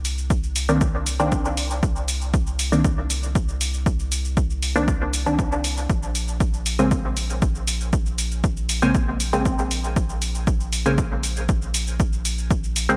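Cavernous and hypnotic, this dub techno excerpt moves at 118 BPM in a straight 4/4, shifting from Cm9 to Bbm9 at 5.9 seconds. An overdriven, punchy electronic kick sits up front from 0.3 seconds, while an electronic hi-hat and shaker, re-recorded in a large room, runs through the whole passage. Underneath, a round, nasal analog bass with a sine-like depth holds the low end between Bb1 and C2, breathing with sidechain pumping. The main voice is a muted, detuned sawtooth chord stab with a filter pluck and mellow decay, colored by chorus, phaser and dub echo and pulsing with sidechain pumping. From 6.8 to 10.9 seconds a crisp, digital wavetable stab adds a bright, detuned riff in the background, also treated with phaser, sidechain pumping and dub echo. Light reverb gives the mix its spacious depth.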